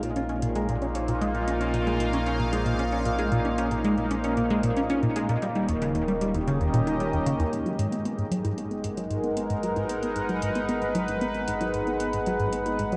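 A straight, steady pulse of electronic hi-hats with metallic shimmer and bongos, touched with tape echo, carries this hypnotic, mysterious stretch of sequencer-driven ambient space music, cut from a longer piece and set in a vast, echoing space. A tight, driving sequenced synth riff with a detuned sawtooth bite and phaser churns beneath a bright, evolving resonant pad that sits up front with slow filter swells, while a round, deep analog bass anchors the low end. A thumb-plucked concert harp rings in the background, its filter sweeping through the first 7.5 seconds before the harp stops at 9.8 seconds, and from 7.5 seconds the bass fades in as the sequenced synth gets its own filter sweep and the chords settle from Bbsus4 and Eb7 onto G#m7.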